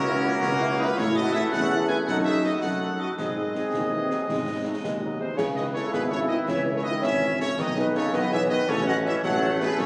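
A stern, martial wind-band march in 6/8 opens with a clear trumpet section carrying the melody over a full ensemble, while a glockenspiel struck with hard plastic mallets adds a bright, sparkling, bell-like line that drops out at 5.2 seconds. Beneath the trumpets, an airy, hollow flute section with soft vibrato and a distant euphonium weave secondary lines, and a mellow trombone section holds sustained chords in the background. A soft-edged tuba anchors the bass, and a very quiet, roomy French horn section fills in the accompaniment. Concert snare drum, bass drum and clash cymbals with bright cymbal tone sit in the background, giving the music its parade-ground footing. The harmony turns to darker minor chords as the second section begins at 5.4 seconds, and the fragment, cut from a longer piece, is bathed in a long, wet concert-hall reverb with a compressed, phone-in-the-room quality.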